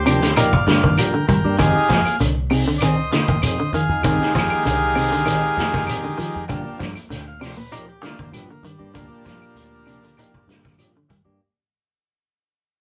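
A straight 4/4 afrobeat groove at 98 BPM drives this short, hypnotic cut from a longer piece, which fades out across its full 11.4 seconds. The vintage drum kit sits up front with a punchy kick, a medium-tuned snare and hi-hat, its top rolled off, while woody claves and a grainy, mellow shekere tick along in the background. A dark, round fingered electric bass, foam-muted, anchors the harmony as it moves from Gm7 to Fm7 and back to Gm7 at 6.5 seconds. A bright, picked clean electric guitar plays arpeggios, and a hollow-body semi-hollow guitar adds fingered stabs coloured by phaser. Over them a buzzy transistor combo organ stands forward with a solo, and the take carries the rough feel of a rehearsal-room recording in a small, reverberant room.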